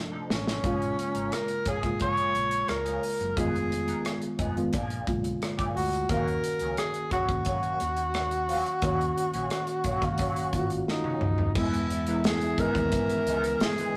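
This is a lush, 1970s-style soul excerpt in Eb minor, moving at a relaxed 88 BPM in a straight 4/4 with a silky, smooth mood. A breathy tenor saxophone carries the melody up front, its soft attack, gentle vibrato and whispered jazz phrasing giving it an intimate feel. Beneath it, a mellow, reedy electric piano with fast tremolo comps through its built-in speakers, while a clean, twangy electric guitar plays a picked riff through wah. A dark, round hollow-body bass played with the fingers and a modern studio drum kit with a punchy kick, medium-tuned snare and rolled-off top anchor the groove, and a drum fill leads into a shift to an Emaj7 chord at 11.6 seconds. From 11.5 seconds a rich violin section floats in distantly in the background, bowed sul tasto with a pure tone and soft attack. The whole track sits in a moderate stone-room reverb with the rough character of a rehearsal-room recording and touches of tube saturation.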